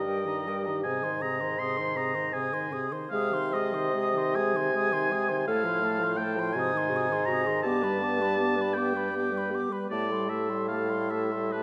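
A wet concert-hall reverb with a long decay surrounds this serene, lyrical excerpt from a slow romantic movement for wind quintet. It sways in a rubato 6/8 at roughly 46-57 dotted-quarter beats per minute in Ab major, and all five instruments play together from 0.0 to 11.6 seconds. The concert flute carries the melody high in its range with an airy tone, vibrato and a soft attack, sitting a little behind the clear oboe, whose second line stands up front with light vibrato. Beneath them, the French horn adds a mellow accompaniment in its low register with light vibrato, while the clarinet's close-miked, warm accompaniment stays very quiet. The bassoon anchors the bass up front, its roomy, distant tone touched with light vibrato. The harmony moves from Eb/G through Ab, F/A and Ab7 before turning to G and ending on Am7 at 9.9 seconds.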